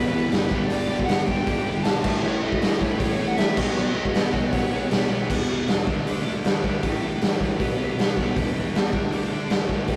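A bright distorted electric guitar riff plays throughout this upbeat, rebellious punk rock excerpt at 157 BPM, alongside a hollow-body overdriven semi-hollow guitar riff that stops at 5.3 seconds, a growly fuzz picked bass in the background, and a dark, smooth overdriven lead guitar melody that plays until 4.9 seconds. The up-front raw garage drum kit, punchy in the kick and gritty with a rolled-off top, enters at 0.3 seconds to drive them, all in a rough rehearsal-room recording with light reverb and saturated grit.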